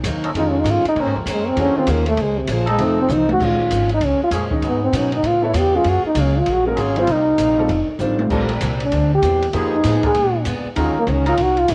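A brisk, brassy big band swing fragment in Bb minor at 196 BPM opens with bright picked acoustic guitar sitting in the background, a woody pizzicato upright bass up front, and a distant, roomy jazz kit with dark cymbals and a boomy kick. A close-miked, dark-toned trombone with light vibrato carries the solo melody from 0.4 seconds over nasal, straight-muted trombone section chords and an intimate grand piano whose action noise is audible. Short drum fills at 3.1 and 8.0 seconds mark the turns through swinging changes such as Gbmaj9 and Bb7b9, all in a lightly reverberant home cassette sound that gives the guitar, drums, muted section and piano a tape-worn tint.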